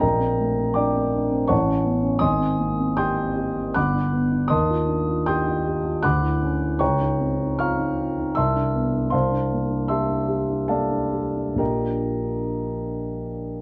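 Serene and luminous, this short passage of impressionist classical solo piano unfolds in a gentle triple metre with a freely breathing rubato feel. A warm concert grand carries the whole 13.6 seconds alone, sitting up front with a deep bass and long, open sustain that lets each harmony ring into the next. The chords drift through lush extended colours, moving from Bbmaj9 through Aadd9, Abmaj9 and Gmaj7 before passing on to Ebmaj9, Dmaj9, Dbmaj9, Cmaj9 and C9, then settling on Bb6 at 11.6 seconds. The instrument spans a broad register, from the low G1 up to G6. Light reverb and a dark, warm production give the sound a soft, glowing depth. The passage is drawn from a longer piece.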